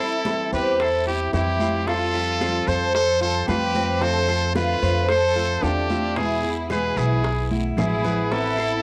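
A brilliant, punchy trumpet leads this danceable Cuban son and guajira fragment in A minor, singing up front with vibrato and scooped notes in a forceful pop style. Beneath it, a clear, earthy violin section bows a close second line, while a fingerpicked flamenco guitar with fresh strings and audible finger squeak supplies bright accompaniment. A metallic Cuban tres picks arpeggios on double strings in the background, and a dark, thumpy gut-string upright bass enters at 0.5 s, plucked and placed up front. The percussion sits behind, with thin-skinned, high-tuned congas struck with hard hands, round, low-tuned bongos played softly and very quietly, a raspy guiro, and woody, vintage-sounding claves, with a drum fill arriving at 7.5 s. At a steady 112 BPM in 4/4, the harmony moves from Am7 through Fadd9, Dm7/F and E before settling on Amadd9, all framed by a moderate echo-chamber reverb and small-room ambience.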